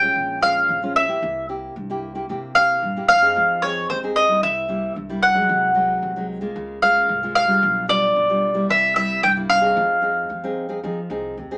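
Lively and yearning, this samba and choro fragment puts a woody, double-strung picked mandolin up front on the melody over a fingerpicked classical nylon-string guitar with fresh strings and audible finger squeak, while a growly, thumpy pizzicato upright bass sits low beneath, the three playing live in one room with a wet studio ambience and a small speaker sound as the harmony moves through Bbm7, C7 and Fm7.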